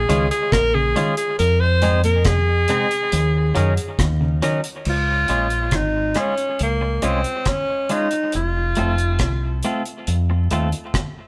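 A breathy tenor saxophone carries the melody up front in this laid-back, uplifting roots reggae piece, its whispered, intimate tone shaped by vibrato, soft attacks, scooped notes and a smooth top, until it falls away at 9.6 s. Beneath it, a deep dub fingered electric bass sits round, dark and amped close in the mix, anchoring a minor-seventh progression that opens onto a brighter Db chord at 4.9 s. A bright, picked, compressed electric guitar with a twangy edge plays accompaniment through a tape echo. A second clean guitar, fingered and mellow, adds arpeggios in the background until 4.6 s. The acoustic drum kit is dry, with a tight kick, hi-hat, rim clicks and crash cymbal, in a straight four-beat feel. The band sounds like it is playing live together in a stone room with moderate reverb, while vinyl crackle lends an aged patina to this short section cut from a longer performance.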